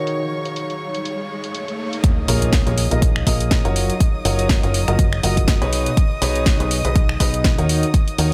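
A boxy grand piano riff with audible action noise and digital delay opens this bittersweet, soulful piano house excerpt at 122 BPM in Bb phrygian, alongside softly bowed chamber violins holding intimate sustained chords with light vibrato and a very quiet, nostalgic tape-like pad that warbles through chorus. Finger snaps, a low-passed hi-hat and a cracking snare with a tape-warm, large-room sheen follow at once, while a faint electronic riser builds toward the drop at 2.0 s, where a punchy, up-front electronic kick lands with a quiet impact. From 2.3 s a foam-muted fingered electric bass with tube saturation pumps under the sidechained piano and strings across a dry mix that moves through Ebm7, Bbm7, Gbmaj7 and B69.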